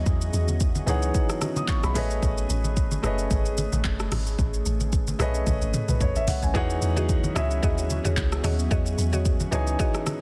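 A deep, round log drum bass anchors this soulful, relaxed amapiano excerpt, its dark, percussive notes sitting under an up-front deep house kit of deep kick, metallic hi-hats, handclaps, rim clicks, shaker and toms, with a drum fill from 5.5 to 6.6 seconds. A polished baby grand piano and a glassy, ethereal FM pad with chorus, built-in reverb and sidechain pumping carry lush chords from Emaj13 to Amaj9#11 and back, while soft, low-tuned congas sit in the background. A woody, chorused and delayed mallet-like synth pluck adds stabs from 6.5 seconds, all in a dry, dense and heavily limited modern mix.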